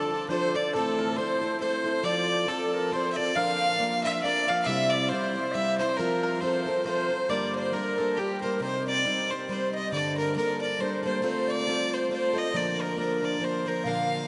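Drenched in the long, wet reverb of a vast cathedral, this Celtic waltz cut from a longer piece sounds as if it were played in a vast, echoing space, with its upper frequencies softened. The mood is spirited and driving, carried by a lilting swung three-beat feel. Up front, a single bowed fiddle takes the melody with a nasal, earthy tone, light vibrato and an airy bow. A bright, picked steel-string acoustic guitar, also close, supplies the accompaniment, with the occasional finger squeak. Further back, a pure wooden flute with a crisp attack and a round, mellow mandolin share a second line behind the fiddle. The mandolin drops out at 8.6 s, when the tune moves into a second section and the harmony shifts to a new home chord.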